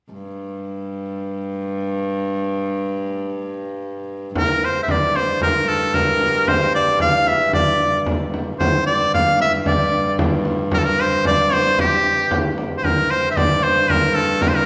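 Ancient and driving, this medieval dance in G dorian moves at 113 BPM in a straight 2/4, opening with a rich, reedy viola da gamba drone on G2 with a biting gut-string tone, light vibrato and an airy bow, before an edgy, up-front shawm with folk-style vibrato takes the solo melody and a deep frame drum joins at 4.4 seconds, all carried by the wet reverb of a church or concert hall in this cut from a longer piece.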